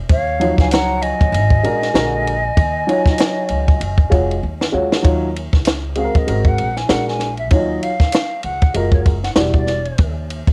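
A hollow, distant silver flute with vibrato carries the melody through this smoky, nocturnal jazz-hop excerpt in Eb dorian at 97 BPM with a swung 16th feel, joined by a breathy, close-miked second flute line with analog delay until 4.4 seconds. A compact cocktail drum kit sits up front with a punchy kick, high-tuned snare and dark cymbals, alongside growly, woody pizzicato upright bass and a dark, slightly detuned upright piano playing rich minor-ninth and suspended chords. After a drum fill, the first flute takes a solo from 5.0 seconds, with the flutes, drums and piano heard through cassette tape and everything set in small-room ambience for a vintage home-recorded feel.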